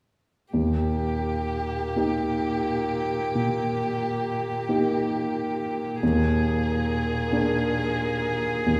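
From 0.5 s, a dark, mellow grand piano sits up front beside an expressive solo violin, bowed with vibrato, soft attack and portamento, while a smooth, even cello, also bowed with vibrato and more distant, holds a low second line in this warm, serene, slow romantic movement for piano quartet in Eb major, a fragment in rubato 12/8 at 41-47 BPM whose harmony moves from Eb to Bb7 over Eb at 6.0 s, set within the wet reverb of a recital hall.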